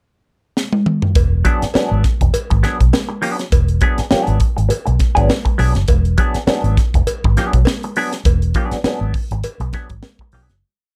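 A dry, close recording with little reverb frames this short, energetic funk piece, which opens with a drum fill at 0.6 seconds before a single E9 groove settles in at 1.1 seconds. A crisp, polished fusion kit with a high-tuned snare, punchy kick and ghost notes drives a syncopated swung groove beside a round, foam-muted electric bass riff anchored on the downbeat. A dark, clean semi-hollow guitar scratches out sixteenth-note rhythm through a wah pedal, a metallic cowbell taps quarters further back in the mix, and the piece fades out from 8.3 seconds.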